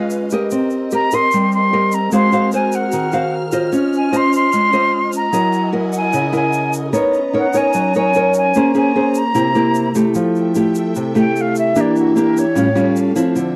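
Flute, nylon-string guitar and strings begin together, with an egg shaker joining a moment later, in this breezy, sunny bossa nova excerpt cut from a longer piece. The fingerpicked guitar sits up front with a small, intimate body, moving through lush, colorful chords such as Ab13, Dbmaj9 and Bbm9. Behind it, a symphonic string section holds bowed, soft-edged chords with an expressive vibrato, while the grainy, bright shaker stays close and dry at a low level. The metal jazz flute carries the melody with an airy tone, a crisp, chiffy attack and an expressive touch, and it steps into a solo at 10.2 s as the harmony turns to Fmaj9, then falls silent at 13.0 s. The dry, close studio sound has a 1970s character.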